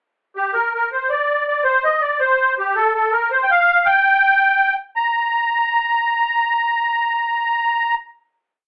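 A musette accordion carries this short Celtic folk jig by itself, its reedy, shimmering musette tuning placed up front. The mood is wild and driving, moving at 108 beats per minute in dotted quarters with a straight 6/8 feel. After a brief pickup, the accordion spins a motif-based melody built from period phrases, ranging from G4 up to Bb5. The tune's single section runs to 5.0 seconds, and a held final note rings until 7.2 seconds. The whole piece sits in a small, moderately reverberant room and comes through with a thin telephone-like sound.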